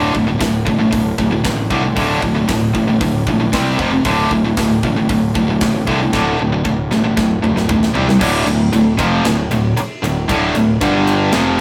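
A straight 4/4 pulse at 115 BPM drives this dark, aggressive heavy metal excerpt in D minor, where two up-front, distorted picked guitars grind out riffs over a growly, fuzz-laden fingered bass and a tight, polished drum kit with bright cymbals, before a drum fill from 6.1 seconds leads at 8.2 seconds into a half-time passage joined by a double-tracked distorted guitar in the background, all captured as a rough rehearsal-room recording with tube saturation and moderate reverb.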